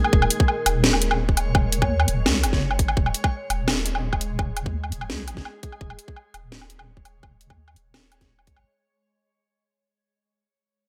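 A bright, 1980s-style digital production with light reverb and digital ambience frames this spacious, dark half-time drum and bass fragment, cut from a longer piece, which fades out across its 8.6 seconds. An overdriven electronic kick and a layered, up-front kit of cracking snare, bright hats and woodblock with gated reverb sit alongside a deep, detuned wobble bass that is saturated, chorused and swept by a filter throughout. Behind them, a moody, wave-folded pad of sustained chords pumps with sidechain in the background, while a reversed, granular texture swells dreamily.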